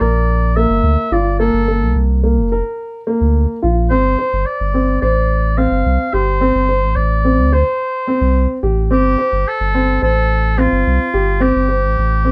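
Close, detailed microphones and a light touch of reverb give this pensive, restless piece of contemporary chamber music an intimate presence. It moves in an uneven 9/8 metre at 216 BPM counted in eighths, with a straight feel and tuning set to A4 = 435 Hz. A warm, classical-style oboe carries the solo melody between F4 and F5, its tone sounding distant and roomy even though it sits up front. Beneath it, a dark, mellow baby grand piano plays short-sustained arpeggios, while a deep, thick sub bass with a saturated, triangle-like tone, fast attack and long sustain anchors the low end from F1 to D2. The harmony rests on Gm7 before shifting at 3.9 seconds to a rootless Fadd9/G, and all three parts play together throughout this 12.3-second passage cut from a longer piece.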